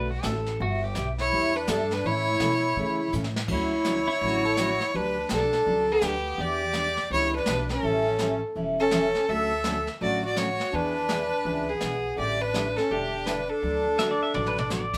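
Swinging and down-home, this western swing country passage at 166 BPM puts a rich, smooth bowed fiddle melody up front over a reedy, sweet accordion with light tremolo tuning, a full-bodied jumbo acoustic guitar, a woody, growly upright bass and a brushed drum kit with dark cymbals and a punchy kick, while a bright, clean pedal steel slides in with brief volume swells at 0.0, 4.1 and 14.0 seconds, the band captured playing live together in a moderate studio room.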